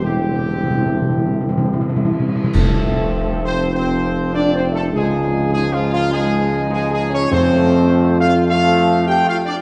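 In an unevenly pulsed 4/4 at 99 BPM, this triumphant, regal classical fanfare in F major, cut from a longer piece, sets a soft-attacked, shadowy trumpet section up front on the melody over sustained chords from a lightly vibrato French horn section and a mellow, punchy trombone section, a smooth-topped solo tuba on the bass, close, dry calf-head timpani that open with a fill and return at 7.3 s, and a cymbal swell, clash cymbals and concert bass drum that play from the start through a band accent at 2.5 s before stopping at 3.7 s, all within a church reverb.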